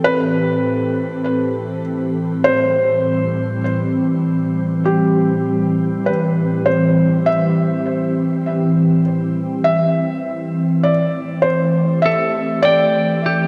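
A glassy FM pad sits up front in this slow, melancholic ambient passage at 50 BPM in 4/4, its slow-attack chords drifting through an ensemble chorus and shimmer reverb with an ethereal, warbling, vintage character and a long release. Alongside it, a felt-muted upright piano carries the melody in a soft, intimate voice, close enough that its action noise is audible and its notes decay quickly into tape echo and shimmer. The harmony rests on C/A before moving to Am7 at 9.7 seconds, giving the spacious mood a gentle, wistful turn. At 12.1 seconds a clean electric guitar enters with bright, twangy, compressed picked arpeggios, bathed in spring reverb, shimmer and tape echo. A lush hall reverb and a cassette-tape sound wrap the whole mix in a hazy, spacious atmosphere, and the passage is cut from a longer piece.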